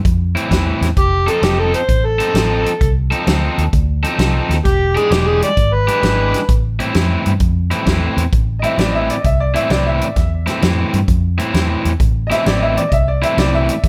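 A swung 4/4 shuffle at 131 BPM drives this brooding, mournful electric blues in A minor, cut from a longer piece, as a round, foam-muted electric bass and a small-room drum kit with a fat snare and punchy kick sit under an up-front, overdriven stack guitar riff, while a gritty amplified harmonica takes a jazz-style solo full of tongue slaps and scooped notes from 1.0 to 6.6 seconds before a brilliant, woody upright piano with audible action noise and analog delay takes over the solo at 8.6 seconds, the whole band set in light reverb.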